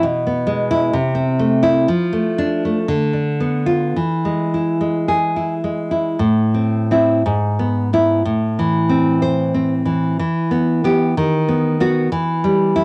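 A romantic solo classical guitar piece in A minor, passionate and melancholic, moves with rubato at roughly 53-67 BPM in 2/4 as a bright, full-bodied, fingerpicked nylon-string guitar sits up front with cassette-tape character, light reverb and small-room ambience, passing through chords like E/B, F6, Bdim/D and E before a second section at 6.2 seconds turns toward Em by way of B/D#, all within a short cut from a longer piece.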